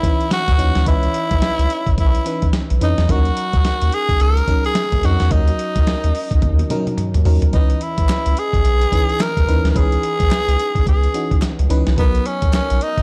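A raspy, up-front tenor saxophone carries the melody in this slick, confident slice of new jack swing R&B, its bright tone shaded with vibrato in a pop-style solo voice. Underneath, a glassy FM electric piano with a bell-like attack and a touch of chorus supplies the accompaniment over chords moving from C#m9 to D#m7 and back, landing on Bmaj7 near the close. A dusty, sampler-style drum kit with a thumpy kick, medium-tuned snare, hi-hat and toms carries vintage 12-bit grit and a swung 16th-note feel, breaking into a drum fill at 6.4 seconds. A round, deep analog bass joins at 0.5 seconds with sustained, dark notes. Crisp human handclaps arrive in the background at 8.1 seconds, all within a dry, dark and warm production.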